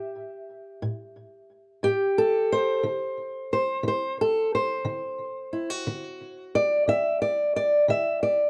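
A fingerpicked old ladder-braced acoustic guitar opens alone, woody and boxy with the dull edge of old strings, sitting up front in the mix. This is acoustic country blues with a swaggering, soulful mood, rolling in 12/8 at 59 BPM counted in dotted quarters with a straight feel. The guitar covers a span from A2 to E5, starting on A5 and moving to D7 at 2.8 seconds. Light reverb surrounds the dark, warm production. The clip runs 8.5 seconds, cut from a longer piece.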